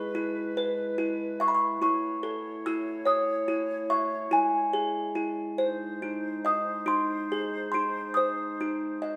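This children's lullaby moves in a gentle, rubato 6/8, with a dreamy and wistful mood across its brief 9.2 seconds, cut from a longer piece. A delicate, tinkling music box carries the melody up front, its plucked notes suggesting a small box and reaching from D#4 up to E6. Beneath it, a mellow woodwind section holds sustained chords in a classical style, played tight as a section with a light vibrato and sitting well below the melody in level. The harmony drifts from E to A, then through C#m/G# before settling on G#. The two parts sound as if played live together in one stone room, whose wet reverb of 1.4 seconds lends the lullaby a soft, echoing glow.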